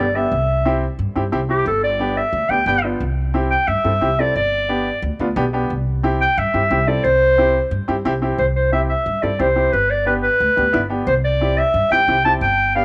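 A light studio reverb frames this short cumbia excerpt, a sunny, festive piece in C major moving at a brisk 178 BPM in straight 4/4. The clarinet carries the melody up front with a warm, classical-style tone that also sounds distant and roomy, taking a solo line from the start through 8.4 seconds. Beneath it, a bright upright piano supplies accompaniment with a brilliant, intimate character, its short sustain and audible action noise giving the chords a crisp, woody edge. The upright bass is plucked, thumpy and acoustic, with steel strings and a forward placement that anchors the low end. The harmony rocks between C and G chords, including a G7, and at 8.4 seconds the tune moves into a new section before the fragment ends at 12.8 seconds.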